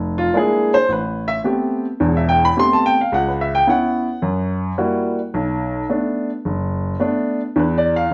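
A roomy, reverberant studio sound surrounds this short solo jazz passage, cut from a longer piece and captured live in one room. A warm baby grand piano sits up front for the full 8.1 seconds, its open tone and long sustain ringing across a range from deep bass to the upper treble. The playful, swinging feel carries a run of rich jazz harmonies, moving from Bb7#11 through Am9, C#madd11 and F#7b9 to Bm7 before settling on an E7 chord near the end.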